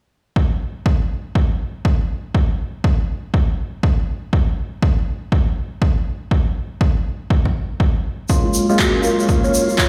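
A punchy, tape-warm electronic kick holds a swung 121 BPM pulse, playing alone and up front from 0.4 seconds in this late-night deep house excerpt cut from a longer piece. At 8.0 seconds the harmony settles on an F#maj7 chord, and around 8.3 seconds a grainy, bright egg shaker and a bell-like, barky tine electric piano arrive, the piano firing clean, direct stabs through phaser and delay with sidechain pumping. A soft, round pluck traces dark, decaying arpeggios in the background, coloured by subtle chorus, dub echo and the same pumping. Silky string-machine chords with a slow attack sit further back, mellowed by phaser and ensemble chorus. Layered electronic handclaps join at 8.8 seconds, and the whole mix carries light digital ambience and the stony reverb of a bare room heard through a big sound system.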